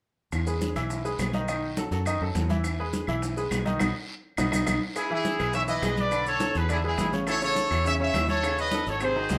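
A brisk, straight 4/4 salsa groove at 207 BPM in E major, carried by damped congas, round low-tuned bongos heard from a distance, woody claves, a raspy guiro and grainy maracas, with a dark, foam-muted fingered electric bass up front. A bright baby grand piano with audible action noise and short sustain comps through the joyful, danceable passage, and the band hits an accent while the drums fill before 5.0 s. Then a tight trumpet section with vibrato takes the melody from 5.0 s, sounding brilliant and present over a live-room reverb.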